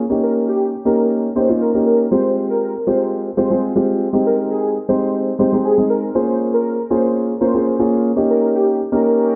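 A clear, up-front concert grand piano carries this euphoric, upbeat pop cut in Ab major at 119 BPM, its deep bass and vintage character anchoring a progression that moves from Eb7 through Fmadd9, Abmaj7 and Bbm7 before returning to Eb7. A soft, detuned supersaw melody enters at 0.2 seconds, its smooth, evolving unison tone given a fast attack, a sustained character and delay. Light reverb and small-room ambience surround the short passage, while a low-pass filter sweep runs through its full 9.4 seconds.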